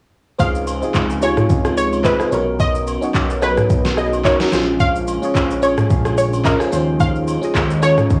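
Hypnotic and deep, this amapiano excerpt moves at 109 BPM in 4/4 with a gentle 16th-note swing, cycling through Dbmaj7, Bmaj9, Bbm9 and Eb13sus4. A round, evolving analog pluck carries the melody from Bb4 to F5, its detuned sawtooth tone shaped by a filter sweep and dressed in chorus, tape echo and cassette grit. Beneath it, a biting, percussive FM electric piano with a noise layer fills out the accompaniment through a phaser, while a smooth, warbling vintage pad holds sustained chords in the background. A fat, saturated sawtooth bass anchors the low end between Bb1 and Eb2, and an up-front electronic drum kit brings a soft kick, deep snare, rim click, shaker, handclaps and toms, re-recorded in a large room. Distant acoustic agogo bells and woodblock, joined by maracas and group handclaps, sit quietly behind everything else until 8.0 seconds, and light reverb with the hazy character of a home cassette recording wraps the whole mix.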